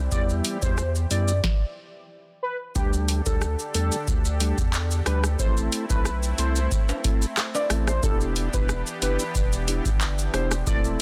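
A booming analog drum machine drives this bouncy, hypnotic dancehall groove at 91 BPM in straight 4/4, its deep kick, tonal snare with soft clipping, metallic hats, handclaps, rim click and shaker sitting dry and up front, with a stop from 1.4 to 2.8 seconds. A thick, saturated sub bass anchors the E minor harmony as it moves through Em, Dsus4, Am and Em7, while a velvety synth lead carries the melody with chorus, vibrato and digital delay over a soft, flute-like tonewheel organ with audible key click. A lush, detuned unison pad pumps under sidechain compression, and bright maracas and timbales sit in the background of this dense, heavily limited cut from a longer piece.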